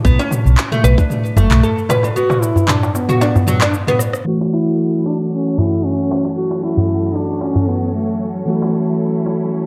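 A dark, softly filtered production sits in a small, moderately reverberant room, giving this brief cut from a longer organic downtempo piece a meditative, hypnotic haze at 114 BPM with a gentle sixteenth-note swing. It opens on Bm7 with a woody, double-strung oud playing arpeggios through tape echo, joined by a growly, hollow-bodied fretless bass and a tight electronic kick that drop out within the first 2 seconds. An up-front electronic kit of handclaps, rim clicks, shaker and muffled toms carries the groove, while a deep clay-shelled darbuka played with soft hands runs through nearly the whole passage. A mellow duduk with folk-style vibrato enters at 2.2 seconds, its line echoing on tape, and a drum fill at 4.0 seconds leads into a move to F#m7. There a bell-like tine electric piano and a lush, bowed string section take over the harmony, both pumping against the sidechain beneath a long filter sweep.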